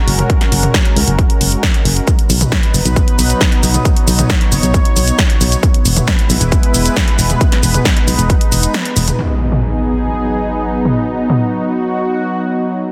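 Soaring and euphoric, this uplifting trance passage in G# minor moves at 135 BPM in a straight 4/4, led by a lush, detuned sawtooth unison pad up front whose chorused, sidechain-pumped chords move from F#add9 through B and E to G#m7. A round, mellow FM bass, also pumping, and a layered, punchy electronic kick sit beneath a dry analog drum machine of hi-hat, shaker, snare and toms, with low-pass filtering and pumping on its hats and toms. After a short break at 8.7 seconds, an electronic impact lands at 9.2 seconds, and the mix carries light reverb within a dense, heavily limited modern master.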